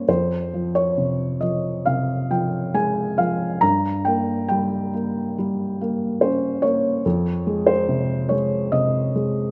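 A moderate scoring-stage reverb with a 1.9-second decay surrounds a felt-muted upright piano that sits up front, its thick felt giving the tone a soft, intimate quality. This short cut from a longer classical piece is a lyrical solo in F minor, tuned to A4 = 439 Hz, with a dark, wistful mood. The piano plays alone for the full 9.5 seconds, moving in 4/4 at roughly 67-73 BPM with a freely breathing rubato. Its range spans F2 to Bb5, so the mellow sound reaches from low bass notes up into the upper register. The harmony opens on F minor, shifts to G diminished at 3.6 seconds, and settles back on F minor at 7.0 seconds.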